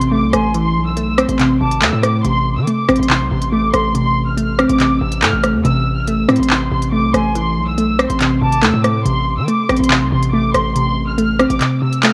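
Menacing and cold, this half-time drill hip hop cut sets a lush, bowed violin section with vibrato high above a glassy, crystalline wavetable pluck that sits up front with chorus and a filter sweep. A distorted, saturated 808-style bass and a crisp, electronic drill kit of handclaps, hi-hat and rim click drive the groove, while a pure silver concert flute sits in the background from 0.3 s and again from 7.1 s. Spring reverb, small room ambience and worn cassette-tape warble colour the mix, and the bass and kick drop out at 11.6 s.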